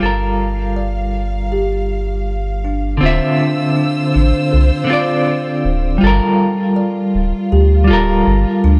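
A lightly swung 4/4 trip hop groove drives this brooding, hypnotic excerpt, where a deep, round dub sub bass with tube saturation and a dark, clean picked electric guitar coloured by tremolo, gritty 12-bit sampler crunch and tape echo sit up front over hushed, bowed sul tasto chamber violins holding Gm9 and Dm9 chords, while a delicate, tinkling music box enters at 0.8 s with tape-echoed arpeggios under a filter sweep, the whole mix sitting in a small room with a rough home-demo character.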